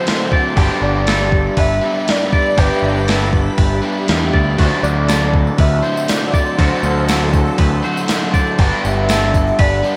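Shoegaze-tinged dream pop rock at 120 BPM in a straight 4/4, this wistful, blissful excerpt sits in D mixolydian, tuned slightly flat with A4 at 437 Hz, and drifts through D7, G6 and back before landing on Gmaj7 at 8.6 seconds. A velvety synth lead carries the melody with vibrato, portamento and chorus, trailing a diffuse ambient delay, while an icy, crystalline pad holds sustained chords behind it with a slow attack and long release. Two overdriven semi-hollow guitars play a riff together, one in the background with subtle chorus and the other more present with reverse reverb, as a bright, twangy clean guitar picks arpeggios soaked in lush chorus and delay. Up front, a gated 80s digital drum machine thumps out kick, snare and hi-hat with gated reverb on the snare, and a growling, punchy overdriven bass joins at 0.6 seconds. A jingly tambourine slips in quietly at 4.8 seconds, and the whole mix is bathed in a cavernous church reverb that gives it a dreamy, suspended haze.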